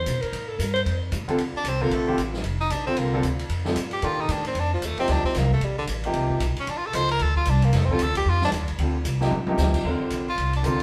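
Modal jazz at a brisk 227 BPM in 4/4, swung on the eighths, with an open, hypnotic mood in Bb major, cut from a longer piece. A breathy alto saxophone opens with a brief solo of soft-attacked subtone notes, stopping at 0.8 seconds, while a woody pizzicato upright bass and an acoustic drum kit with dark cymbals and a boomy kick set the pulse beneath it. A polished baby grand piano enters at 1.3 seconds with clear, long-sustained accompaniment, and an edgy tenor saxophone takes over the solo at 1.6 seconds, forceful and punchy with vibrato and scooped notes. The harmony moves from Fadd9 to Bbmaj9 and later to Ebmaj9, and the drums play a fill at 9.3 seconds. The band sounds live in one room, wrapped in a wet stone reverb, with the horns, bass and piano placed up front.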